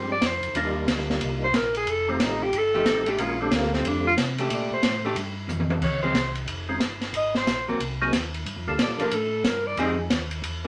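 A breathy alto saxophone leads this greasy, soulful soul jazz organ trio excerpt in Bb major, playing a subtoned, vibrato-laden solo over a round tonewheel organ bass line and a percussive organ melody part colored by slow rotary speaker and chorus vibrato. An up-front acoustic drum kit with a boomy kick swings at 182 BPM, while a dark, clean hollow-body archtop guitar adds picked accompaniment from 0.6 seconds. The percussive organ drops out at 4.1 seconds and returns at 6.7 seconds, after a drum fill at 5.5 seconds, as the harmony shifts from Bbmaj13 to Dbmaj7, all set in a small, reverberant room.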